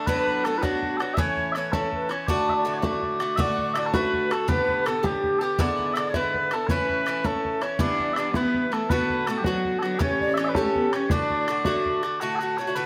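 Lively and cheerful, this brief Celtic jig carries the tune on sweet, continuous small bagpipes over a metallic, up-front Irish bouzouki and an open, boomy bodhran with a vintage, band-limited tone, while a breathy, slightly unsteady wooden flute with vibrato sits distant in the background and a single rich, smoothly bowed cello adds a second line from 7.8 s, captured in a close, detailed recording with light reverb.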